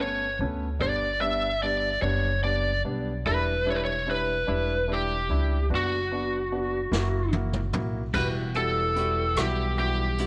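Six-eight pop ballad, dramatic and aching, cut from a longer piece: a dark, overdriven lead guitar sings the melody up front over a polished baby grand piano and a woody, thumpy pizzicato upright bass, set in light reverb. A vintage brush kit with dark cymbals and a punchy kick enters at 6.9 seconds with a fill. At 8.1 seconds a clean, compressed twelve-string electric guitar adds picked arpeggios in the background, bathed in spring reverb, as the harmony moves to Emadd9.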